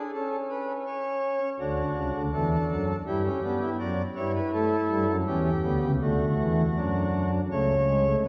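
A wet church reverb with a 2.7-second tail surrounds this short cut from a longer piece, heard from further back in the room. It is a joyful, stately baroque-style fugue in three parts, set in D major at 82 BPM in a straight 4/4, with the tuning at A4 = 436 Hz. A single pipe organ plays alone on its cornet stop, a nasal solo voice with a romantic voicing and a tremulant, placed up front in the mix. The organ spans C#2 to D5 and carries the whole 8.3 seconds as one section. Its harmony moves from A/C# through D, Em/G and A7, returning to D before landing on A/C# again at 7.5 seconds.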